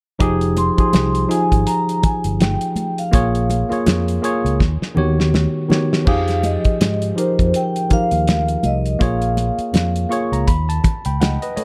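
Bittersweet and smooth, this lush 1970s-style soul piece moves at an unhurried 82 BPM in F minor with a swung sixteenth-note feel. A worn, slightly out-of-tune tine electric piano sits up front through a combo amp, voicing the chords from Fm9 through Bbm7 to an altered Eb7. A round, amped fingered electric bass holds the low end. The cloth-damped drum kit sounds thuddy in a small room, with a fat snare, tight kick and dark cymbals, while high-tuned congas played with soft hands sit damped, close and dry in the background. From 0.6 seconds a mellow vibraphone with soft mallets and a medium motor vibrato carries the ringing melody, and a drum fill at 4.6 seconds leads into the second section before the electric piano closes with a fill from 9.7 seconds, the whole mix set in a warm production with light studio reverb.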